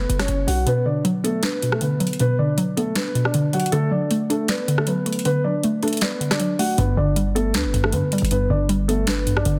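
A soft, felt-muted upright piano carries the melody up front through a low-pass filter and delay in this dreamy, wistful half-time trap piece, as a hollow, chorused square-wave pluck enters at 0.7 seconds beside electronic drums with a sharp snare, rim clicks and metallic hi-hats, while a punchy, heavy 808-style bass sounds briefly at the start and returns at 6.8 seconds, set in light digital ambience within a dense, heavily limited modern master.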